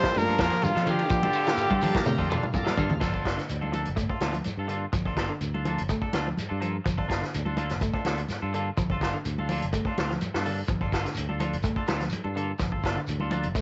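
A lo-fi home cassette recording with light studio reverb and a dulled top end carries this hypnotic, defiant afrobeat excerpt in G minor at 125 BPM, where a bright, vibrato-laden trumpet leads over a very quiet clear trombone section, a buzzy metal-muted trombone and a shouting, lightly overdriven tonewheel organ with slow rotary that drop out by 3.0 seconds amid an organ and drum fill, leaving a twangy, slightly broken-up guitar playing arpeggios, a clean chorused guitar stabbing on a Gm9 chord, a punchy vintage drum kit with dark cymbals, a direct fingered electric bass, hard-handed congas and a grainy shekere to carry the groove to the end.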